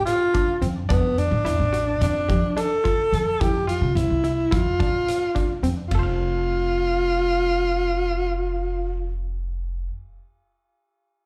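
Heard through a club PA at a live gig, this dry-sounding cut from a longer progressive instrumental drives along in 9/8 at 216 eighth-note beats per minute in F major, intricate over chords moving from Dm69 through Cadd11 to F6. A breathy, whispered tenor saxophone sings the jazz-style solo melody up front with vibrato and slapback echo, while a round analog pluck with a sawtooth edge, ring modulation and chorus spins arpeggios through tape and slapback echoes. A woody, thumpy upright bass on gut strings anchors the low end, and a big, dark rock kit with a punchy kick, hi-hat and ride plays until 6.0 s, just after the music turns to its second section at 5.9 s.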